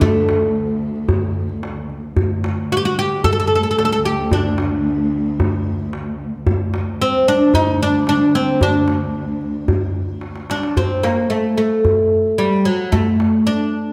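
Set in a moderate recital-hall reverb, this excerpt of Arabic maqam ensemble music in D hijaz at 112 BPM feels longing and hypnotic, as a bright, woody, fretless oud carries the melody up front over a deep, clay-shell darbuka and a rich, bowed cello section drone with vibrato that lasts until 10.8 seconds, ending together with a drum fill that runs from 10.2 seconds.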